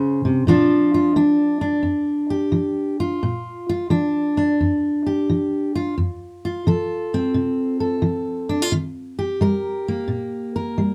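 Blues in B-flat major, this short excerpt moves at 87 BPM in 4/4 with a swung eighth-note feel that gives it a swaggering, laid-back stride. A fingerpicked steel-string acoustic guitar plays alone throughout, ranging from F2 up to C5. The jumbo-bodied guitar sounds full-bodied and up front, its tone warm. The harmony settles on B-flat, shifts to F around 6.0 seconds, and arrives at E-flat near 8.7 seconds. A modest small-room reverb and a live-in-one-room recording give the guitar an intimate, natural presence.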